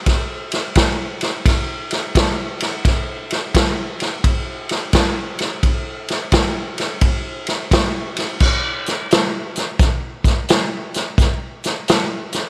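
Gritty and soulful, this blues fragment at 86 BPM in 4/4 swings its eighth notes on a big-band drum kit of crash, hi-hat, ride, medium-tuned snare and punchy kick, its dark cymbals ringing in a roomy studio space with moderate echo-chamber reverb as the groove moves into a new section at 8.4 seconds.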